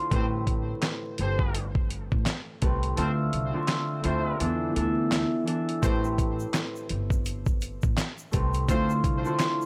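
Boom-bap hip-hop with a dark, gritty mood and a swung groove, built on a ringing, thumb-plucked concert harp up front and a woody pizzicato upright bass thickened by tube saturation, while a dusty, compressed sampler-style kit of thumpy kick, fat snare, hi-hat and handclaps sits forward (its kick dropping out from 3.0 to 5.8 seconds), distant, punchy horn stabs with vibrato and tape echo hover behind, and a grainy egg shaker slips in quietly in the background at 5.8 seconds, all set in a dry hardware recording coloured by transformer saturation and vinyl crackle.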